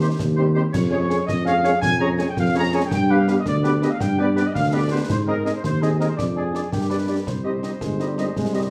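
This military-style march for wind band moves at 110 BPM in a straight 6/8, counted in dotted quarters, with a stern, resolute mood in C minor, heard in a short cut from a longer piece. A mellow, punchy tuba sits up front on the bass line from the start, with a warm French horn section supplying accompaniment in the background and a clear, close-miked woodwind section carrying a second line, both in tight classical style with light vibrato. Concert snare drum, concert bass drum and clash cymbals enter at 0.2 seconds, acoustic and close and dry, the cymbals bright. At 0.7 seconds a dark trumpet section takes the melody up front, reaching up to Bb5 as the harmony moves from Cm/Eb through Db/F and G to Ab, then Ddim/F and G before settling on Cm. A clear euphonium with a soft attack slips in behind at 7.8 seconds on a brief second line, and a moderate large studio reverb gives the ensemble a sense of space.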